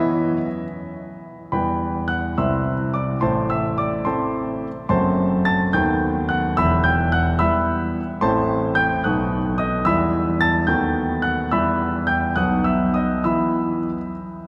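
In a 6/8 counted at 66-74 BPM to the dotted quarter, this classical-period piano sonatina in E minor moves with a supple rubato that gives it an elegant, graceful bearing. A solo concert grand carries the whole piece from 0.0 to 14.1 s, ranging from a deep bass at E1 up to A6, its tone clear, polished and placed up front with audible action noise that lends an intimate closeness. The harmony begins on a bare E5 sonority and then settles into E minor at 1.5 s, passing through C, Am, F#dim and B7/D# before returning home. A second sweep through Am, B7 and Em leads to a B chord and closes on the E5 sonority at 13.3 s. The piano's long sustain blooms into a wet cathedral reverb with a 4.5-second decay, setting the instrument in a resonant church or concert hall. This short passage is cut from a longer piece.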